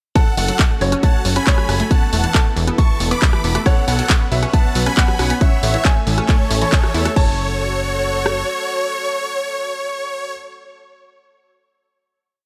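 Lightly reverberant and punchy, this euphoric uplifting trance piece at 137 BPM in F# minor launches straight into a soaring drop where a huge, detuned supersaw lead sings a repeating riff in thirds and sixths with sidechain pumping and digital delay, a clear grand piano plays its own repeating riff through delay, a very quiet, intimate second grand piano with audible action noise doubles the anthem line, a lush supersaw pad holds sustained chords, a flanged, dub-echoed unison pluck runs arpeggios until 7.4 seconds, and a tape-warm house drum kit's four-on-the-floor kick joins a funky, tube-saturated analog bass to drive the groove, with programmed hats, claps and crashes from a second kit layer until 7.3 seconds, through a band accent at 6.7 seconds before the final F# minor chord rings out from 7.2 seconds.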